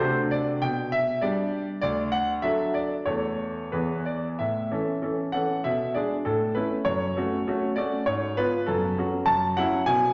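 A bright grand piano, sitting up front with a brilliant, smooth tone, carries this short classical-period sonatina alone from start to finish. The mood is graceful and elegant, set in A major at 98 BPM in 2/4, with a rubato feel that lets the phrasing breathe. Its range runs from D2 up to A5, and the sound has a vintage character, its top end rolled off above 7.6 kHz. The opening passage moves through chords such as D7/C, G/B and D before settling on A/E and E, and a second passage begins at 4.4 seconds on A, turning toward F#m and closing on F#m7. A wet recital hall reverb with a 1.7-second decay surrounds the instrument, and the recording ends at 10.1 seconds as a brief cut from a longer piece.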